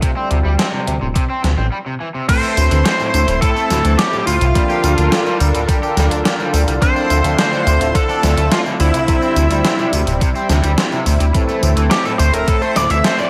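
Synthwave at 106 BPM, moody and driving, this excerpt sets a thumpy, overdriven electronic kick and a gated 80s drum machine with crash, hi-hat, gated-reverb snare and tambourine under a glossy, dark chorused synth bass, a thick detuned unison pad over D-pedal chords, and a crunchy guitar riff with lush chorus and delay, before a short break at 1.7 seconds gives way at 2.3 seconds to a bluesy, distorted lead guitar melody with tape echo, shimmering string-machine violins and round, brassy synth stabs in the background.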